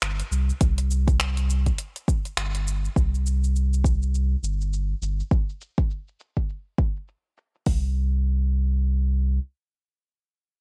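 A round, sine-like sub bass sits up front through this short, earthy organic downtempo fragment at 102 BPM in 4/4, holding deep sustained notes with a fast attack until about 9.4 seconds. Two electronic afro-pop drum kits carry a swung sixteenth-note groove. One is quieter, with low-pass-filtered finger snaps, hi-hat and shaker. The other enters at 0.6 seconds with a kick drum and metallic hats. The drums have a tape-warm, produced sheen, a filter sweep colors them through the middle stretch, and the sound stays dry and close.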